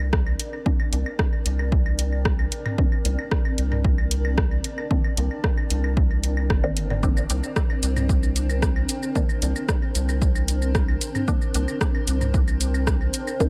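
A straight pulse of punchy, overdriven electronic kick drives this hypnotic, nocturnal dub techno excerpt, joined by a deep house kit of metallic hi-hats, rim clicks and shaker, with overdriven electronic claves and toms, sidechain-pumped and thrown into dub echo. A round, dark analog bass pumps up front beneath a cloudy granular pad that holds a single Cm9 chord with a blurred, evolving body and its own reverb. From 0.7 seconds, a muted, resonant chord stab enters through a phaser and dub echo, a filter sweep running across it the whole way in a dry, close-sounding mix.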